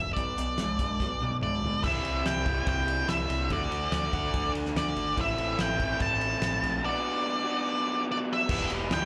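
An octave-fuzz lead guitar sits up front, its dark, picked fuzz tone carrying the melody between D5 and A5 through distortion with slapback and tape echo, in this gritty, brooding classic rock excerpt at 144 BPM in a straight 4/4. Beneath it, a raw garage guitar plays the riff with a double-tracked, lo-fi overdrive and its own slapback echo, while a growling fingered electric bass, round and overdriven, anchors the low end from E1 to B2. A cloth-damped drum kit enters at 0.2 seconds with a thuddy, fat snare, tight kick and dark cymbals, and a drum fill from 1.0 to 1.8 seconds leads into the main stretch. The chords move from Bm through C, D and Am, returning to Bm and landing on Em at 8.5 seconds. It sounds like a live gig heard through a club PA, with light reverb around the band, and the clip is cut from a longer piece.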